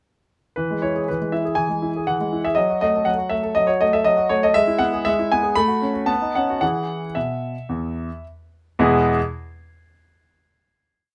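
Graceful and playful, this short classical-period piano sonatina in E major, tuned to A4 = 439 Hz, moves at 109-121 BPM in a straight 4/4, with a clear, intimate grand piano sitting up front with audible action noise as its single-line melody rides over broken-chord bass in light reverb, slowing from 3.6 s until a final chord arrives at 8.8 s.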